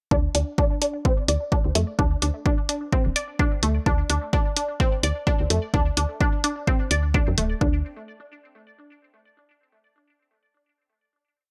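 Minimal techno with a sparse, hypnotic feel and a swung sixteenth-note groove, captured as a dry, gritty hardware recording with little reverb. A punchy analog kick holds four-on-the-floor under closed programmed hats, while a woody, round FM bass plays a syncopated riff and a squelchy, resonant blip pluck, coloured by phaser, tape echo and sidechain pumping, repeats a 16-step sequence up front. The groove runs to 7.6 seconds, and a final note then rings out until 9.5 seconds.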